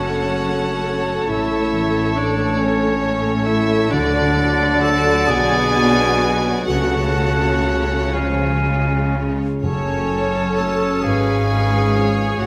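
A slow, rubato romantic orchestral movement in F# minor and 6/8, at 39-46 BPM, opens with a warm, lightly vibrato violin section carrying the yearning, melancholic melody from the background, while an airy flute, an intense second violin section, a roomy clarinet and a vintage-toned oboe weave second lines alongside a rich viola accompaniment, dark French horn chords, ringing thumb-plucked harp arpeggios, a close cello section and distant double basses, with very quiet hard-mallet timpani sounding briefly at 9.6 s, set in a wet scoring-stage reverb.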